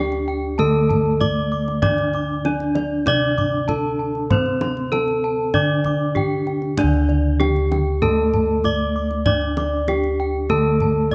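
Closely miked in a light reverb, this shimmering, ceremonial excerpt of Javanese gamelan in D slendro moves at 97 BPM, with a bright, ringing melody on horn-struck bronze metallophone up front, a lower metallophone accompaniment, and a higher metallophone playing arpeggios with the beating shimmer of paired tuning, all over round, mellow bossed gongs struck with padded beaters and a deep kendang that enters at 0.1 seconds.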